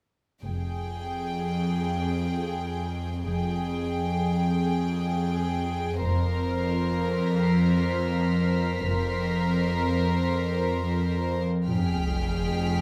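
An up-front violin section carries a soft, floating second line over a rich cello and double bass section in this mysterious, uneasy cinematic fragment in F minor, moving at a slow 64 BPM in 3/4 over an Fmadd9 chord, with every string section bowed sul tasto. Behind them sits a tense, detuned sawtooth drone with a string-like tone, phaser and vibrato, and from 6.1 seconds a second violin section adds a pure, high texture. At 11.7 seconds a huge, bright sub drop hits as an impact, with a stone room giving the whole piece a moderate reverb.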